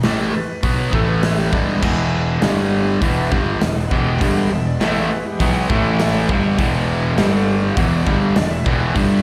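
Confident and sunny, this short cut from a longer classic rock piece moves at 101 BPM in a straight 4/4, built around power chords on E, A and G. Two distorted electric guitars play the riff from the start, one bright and one sludgy and warm, both overdriven with a slapback echo and sitting in the background. A growly fuzz-laden fingered bass anchors the low end with overdrive, while a big acoustic drum kit sits up front with punchy kick, a medium-tuned snare, hi-hat and bright crash cymbals. A reedy tonewheel organ holds sustained chords through a slow rotary speaker with a touch of overdrive, and at 1.8 seconds a double-tracked crunchy guitar joins the riff, colored by a phaser. The whole thing sounds like a live club gig heard through the venue's PA, with a small-room reverb giving it a roomy feel.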